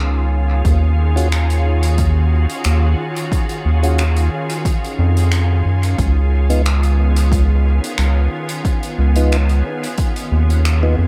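A lightly swung 4/4 groove of punchy, layered electronic kick and a soft-mallet kit of finger snaps and hi-hat with dub echo drives this spacious, deep ambient dub fragment, where a round, wave-folded analog bass sits up front beneath a pure, slow-attack organ-like pad with ensemble chorus and reverb moving from Db9 to Ebm11 and back at 6.0 s, while a dark, clean tonewheel organ with key click and slow rotary speaker adds filtered, echoing stabs in the background from 1.2 s, within a small room ambience.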